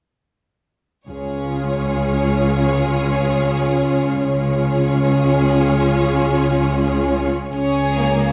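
A moving, uplifting passage of cinematic film score for orchestra, played in free time and cut from a longer piece. From 1.1 seconds a cello section holds a low, focused bass note beneath a dark, smooth-topped viola section and a violin section carrying a second line, all three bowed with vibrato and a lush ensemble sound. The second-line violins sound distant and soft in attack, their phrases gliding with portamento, as do the violas, which drop away at 7.3 seconds. At 7.5 seconds a second violin section comes up front with a single melody note, joined by a faint, bright triangle. A wet scoring-stage reverb places the strings further back in the room, giving the brief passage a spacious, glowing sheen.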